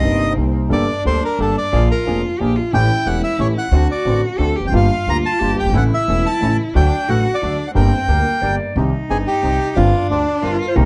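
A reedy, close-miked bandoneon carries the melody up front in this passionate, sultry tango excerpt at 180 BPM in 3/4 with a rubato feel, over a second bandoneon's stabs in the background, a bowed cello's expressive second line with vibrato and portamento, an intimate vintage grand piano accompaniment with audible action noise and deep bass, and a woody pizzicato upright bass, while a smooth solo clarinet joins at 8.1 s as the chords move from Cm7 through Gm to a closing G7sus4, set in light reverb with a dark, warm production.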